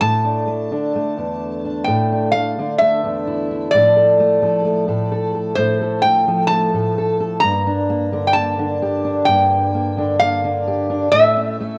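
Melancholic and reflective, this slow acoustic folk piece at 65 BPM in 4/4 sets a metallic, nasal lap resonator guitar, played with fingerpicks and slide and bathed in plate reverb, up front over a dark, fingerpicked steel-string acoustic guitar whose finger squeaks can be heard. Both guitars play throughout the 11.8-second cut, moving from Asus4 through F/A and Gmadd9 before settling on A. A moderate large-studio reverb and the warbling pitch drift of worn cassette tape give the sound an aged, wavering character, with tuning slightly above standard at A4 = 441 Hz.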